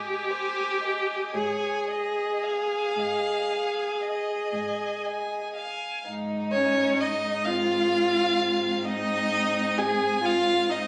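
Tender and serene, this slow romantic movement for string quartet unfolds in a rubato 12/8 at roughly 36-44 beats per minute in dotted quarters, set in Ab major and cut from a longer piece. A dark, woody first violin carries the melody between C4 and Ab5 with vibrato, while a warm second violin with a soft attack and expressive portamento sits up front with its own line between Ab4 and Ab5. The viola, also up front, supplies accompaniment in a narrow band from Db4 to Ab4 with a rich, focused tone and a smooth top. Beneath them a distant cello holds the bass on Ab2, warm and expressive, with vibrato and portamento. All four players bow throughout the clip, which shifts into a new section at 6.1 seconds, and the phone recording from inside the room gives the ensemble a light club reverb.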